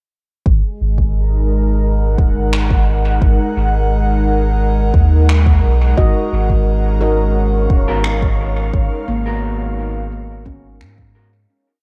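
Ambient dub at 87 BPM in G# dorian, this deep, spacious piece rests on a single G#m9 chord, where a round, up-front sub bass with tube saturation and a soft, slow electronic kick carry the groove beneath an airy pad of detuned, chorused sustained chords. Sparse finger snaps with dub echo join at 2.5 seconds, and at 6.0 seconds a mellow, ringing handpan begins three slow arpeggio loops of unequal length drifting against each other, soon shadowed by a breathy, wind-like tuned noise holding a high note in the background. As the fade-out begins at 7.8 seconds, a dark, slightly broken-up electric guitar through a small old amp adds lo-fi, echoing chord stabs, all within a small-room home cassette recording.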